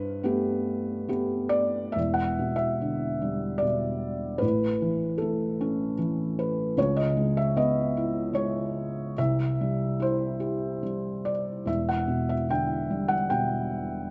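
Rhythm flows in an unhurried 3/4 with a loose rubato feel, drifting between 68 and 78 BPM in this calm, peaceful stretch of lyrical classical solo piano. A felt-muted upright piano plays alone throughout, its thick felt giving a dark, intimate tone, with the soft knock of its action clearly audible. Set close and up front, it ranges from a deep E1 up to G5, in E minor with tuning at A4 = 441 Hz. After a brief opening on Gadd9, a new section settles in at 2.0 seconds, moving through Em7, Aadd9, C#m7 and C before returning to Em7 at 11.7 seconds. Light reverb adds a little space around the piano, and the sound stays soft and rounded, with the top end rolled off above 7.8 kHz. Cut from a longer piece, the passage ends at 14.1 seconds.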